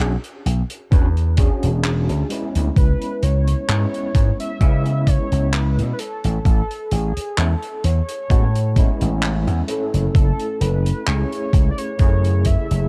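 A gritty, barky electric piano with tremolo, chorus and analog delay opens this woozy, nostalgic vaporwave fragment alongside a punchy, up-front slap bass and a small-room kit of handclaps and hi-hat, a thumpy sampler-style kick arriving at 0.9 seconds and a velvety, detuned synth lead with vibrato, chorus and tape echo entering at 2.8 seconds, all over a gently swung E13, C#m7, Amaj7, F#m7 progression with the dry character of cassette tape.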